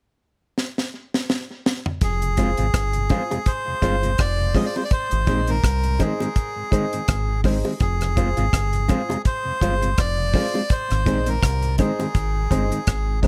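This roots reggae excerpt moves at 83 BPM in 4/4 with a swung sixteenth-note feel, in F dorian, and its mood is serious and meditative. The dry, up-front drum kit opens alone with a fill at 0.6 seconds, its high-tuned snare, tight kick, rim clicks, hi-hat and toms setting the pocket. At 2.0 seconds the round, dark fingered bass enters low and prominent, and the reedy, breathy melodica takes the melody with a nasal, close-miked character and tape echo. A soft, flute-like tonewheel organ sits very quietly beneath with chorus vibrato and a slow rotary speaker. From 2.4 seconds, a clean, fingered electric guitar with tape echo adds background accompaniment, a woody upright piano plays natural-sounding stabs, and tight, high-tuned bongos under soft hands sit back in the mix. The harmony alternates between Fm and Ab under a light reverb.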